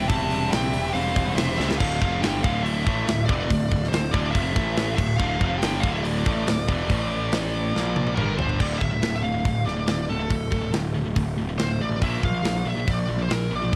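Dark and relentless, this heavy metal excerpt at 141 BPM in D minor sets a high-gain lead guitar melody over three stacked riffing guitars (one sludgy, one bright and high-gain, one double-tracked and very quiet), a growly fuzz-overdriven bass and an up-front, tight metal drum kit with bright cymbals, while a brief second lead line sounds for the first 1.7 seconds and a very quiet, brassy pipe organ trumpet stop with audible chiff holds sustained chords until 8.6 seconds, all in a dark, dry production that moves from C/E through Dm, A5, Bb5 and G5 to D5, with drum fills at 1.6 and 7.7 seconds.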